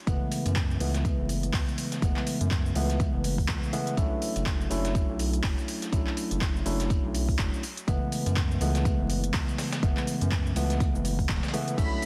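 Warm and moody, this deep house excerpt at 123 BPM swings its sixteenths as a worn, slightly out-of-tune tine electric piano plays up-front stabs with tape echo and sidechain pumping over F#m11 and Bm11, a round, dark analog bass, a deep layered electronic kick, a smooth-hatted house kit with cabasa, handclaps and crash, and a gritty sampler-style kit with a fat snare tucked in the background, while a veiled, muted violin section on B5 appears only from 11.8 seconds under light reverb and vinyl crackle.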